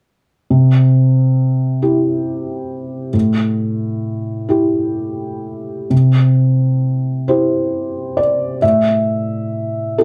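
Tender and peaceful, this brief excerpt of neoclassical minimalist piano moves at a slow 44 beats per minute in 6/8, played with a free, rubato feel. A solo felt-muted upright piano carries the whole piece from 0.5 to 10.0 seconds, ranging from A2 up to E5. Its tone is soft and mellow, with an intimate, vintage character and audible action noise that places the listener close to the instrument. The harmony settles on C and A5 chords, and a second passage beginning at 5.9 seconds returns to the same pairing. A wet studio reverb lends the dark, warm production a gentle sense of space while keeping the piano up front.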